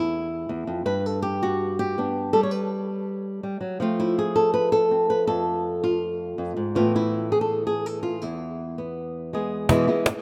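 Through a lush hall reverb and a rough home-demo mix, this mournful yet fiery flamenco excerpt at 163 BPM centers on an up-front, fingerpicked acoustic guitar carrying the melody over E, G, F and Amadd9 chords, while a woody, close and dry cajon with faint snares and hard hands strikes in only at 9.7 s.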